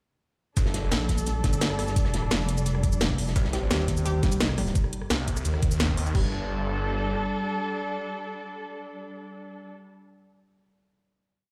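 A snarling, distorted saw bass leads this dark, technical drum and bass piece, its detuned unison growl cut into chopped phrases and pushed hard with tube saturation and sidechain pumping, coming to the fore at 3.4 seconds. Beneath it, a pulsing pluck wobble bass adds heavy, mellow sine phrases with changing wobble speed and a chorus sheen. Muted chamber strings hold veiled, con sordino chords that carry vintage 12-bit sampler grit. The rhythm stacks a knocking, tape-softened electronic kick and an up-front kit of cracking snare, metallic hats, rim clicks, shaker and crash, while a gritty looped breakbeat with edits sits in the background with its top rolled off. An analog pluck runs a bright, round 16-step arpeggio sequence through cassette tape colour and tape echo, and the aggressive, tense piece closes on the strings' final chord, which ends at 9.7 seconds in a large, reverberant space.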